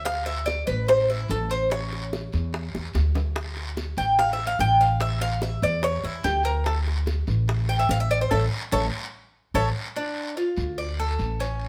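Latin Cuban son and guajira in D minor at 145 BPM, this nostalgic, sultry cut from a longer piece captures a band playing live in one room with light reverb. The picked, metallic Cuban tres carries arpeggios up front on its double strings and takes a solo through 10.0 s, while a woody, growly pizzicato upright bass anchors the bottom, tight, high-tuned bongos add drum fills, and a raspy, band-limited guiro sits quietly beneath. A band accent arrives at 8.3 s before the harmony lands on D minor at 10.0 s.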